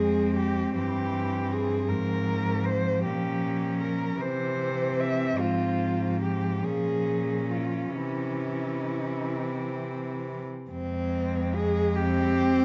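Four bowed cellos begin together in an elegiac, melancholic classical passage in a rubato 6/8, with a woody melody with vibrato up front over a warm, softly attacked second line, a dark, airy-bowed accompaniment and a clear, nasal bass, all played sul tasto and captured closely in a moderate recital-hall reverb, moving from its opening section into a new one at 10.7 seconds in this cut from a longer piece.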